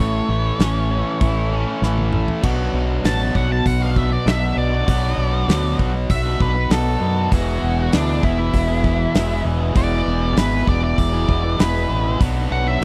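A dark octave-fuzz lead guitar takes a solo from 2.4 s in this swaggering, gritty classic rock excerpt at 98 BPM in B dorian, riding over riffs from a bright distorted electric guitar and an overdriven semi-hollow guitar, a growling, punchy fingered bass up front, and a damped 70s drum kit that enters at 0.6 s and plays a fill from 1.8 s, in a dry, close, small-room 1970s-style studio sound.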